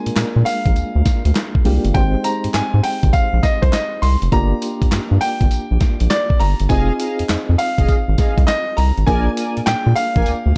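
A clear, polished baby grand piano carries the melody from the start, its present tone trailed by tape echo, over soft, mellow electric-piano-like synth keys shimmering with chorus and tremolo. This is a bouncy, punchy new jack swing groove in R&B style at 101 BPM in 4/4, with a 66% swing on the 16th notes. A round, deep analog bass sits up front alongside a gritty, compressed sampler-style drum kit with a thumpy kick, medium-tuned snare, hi-hat, tambourine and handclaps, while a very quiet, crisp group handclap adds a human, vintage touch. At 6.7 seconds, brassy, detuned synth brass stabs arrive with a soft attack, colored by chorus, phaser and vibrato. The chords move from Bb7 through Abmaj7, Gm7 and Fm7 back to Bb7, and the dark production keeps the sound dry and close in this short cut from a longer piece.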